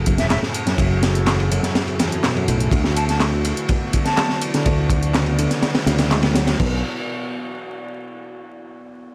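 A crunchy breakbeat drum kit sits up front in this energetic, raw breakbeat clip at 124 BPM in B dorian, its punchy kick, high-tuned snare and dark cymbals sounding gritty and saturated with a rolled-off top. A punchy, tape-warm analog drum machine adds handclaps and hi-hat beneath it, while a growly, direct fingered electric bass carries the low end. In the background, a reedy electric piano plays a lightly overdriven riff with delay, as if through built-in speakers, and a deep, moody pad holds sustained chords with chorus, reverb and sidechain pumping. An airy concert flute with vibrato and a soft attack carries the melody from 0.2 to 4.4 seconds, filtered to an AM radio sound with delay. The chords move from F#m9 to D69 and land on Bm7 at 6.6 seconds, all in a dry room under noticeable vinyl crackle.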